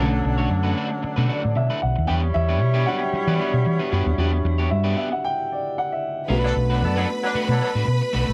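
A boxy, mellow baby grand piano takes the lead in this driving, danceable disco excerpt in B minor at 114 BPM, soloing over Bm7 and Em7 until 6.3 seconds, with a stop in the band from 5.2 seconds. A round, up-front hollow-body bass, a picked electric guitar at the edge of break-up, and punchy, distant horn stabs with vibrato fill out the groove. At 6.3 seconds a lush, clear studio string section enters with a bowed second line as the chord returns to Bm7, all set in a small, lightly reverberant room with a dark, warm production.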